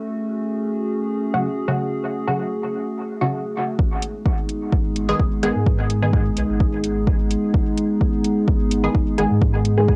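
A punchy, overdriven electronic kick anchors this deep, meditative dub techno excerpt at 128 BPM in G# phrygian, arriving at 3.8 s with a soft, round sub bass colored by tube saturation, metallic overdriven hi-hats close behind, as the harmony moves from F#m to G#m. Before that, a warbling, nostalgic pad in square and triangle tones holds sustained chords through chorus and reverb, joined at 1.3 s by a muted, detuned sawtooth chord stab whose filter sweeps through the opening, steeped in phaser and dub echo. The pad, stab and bass pump to the sidechain, and the whole takes on a lo-fi character from its small-room home recording on cassette.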